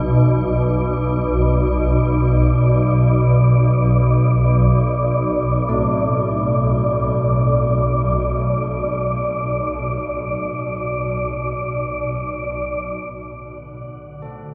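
A swarming, detuned drone sits up front from the start, tense and granular between B1 and D3, with an airy, breathy wind-like noise layer hovering above it and mellow bronze carillon bells ringing soft arpeggios with delay in the background, fading out by 13.1 seconds, all in free time within a vast, ominous dark ambient excerpt of wet cathedral reverb that moves from B minor to D7 at that point.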